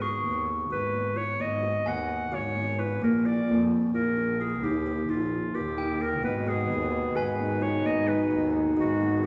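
A bright, up-front solo clarinet carries the melody over buzzing, woody kalimba arpeggios and a focused bowed double bass with vibrato, while glockenspiel struck with hard plastic mallets adds sparkling, bell-like glints that drop out and later return. This restless, shimmering chamber music in an uneven 7/8 fragment gains depth at 6.2 seconds, when a dark, distant French horn enters with a second line and a reedy pedal harmonium breathes sustained chords in the background. A wet recital-hall reverb surrounds the ensemble.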